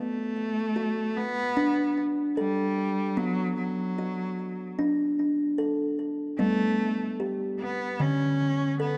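World music, gentle and meditative and cut from a longer piece, with a rich, focused bowed cello singing the melody with vibrato while a woody, hollow-sounding kalimba rings out thumb-plucked arpeggios through a delay, both up front for the full 9 seconds inside a dark, lingering church reverb.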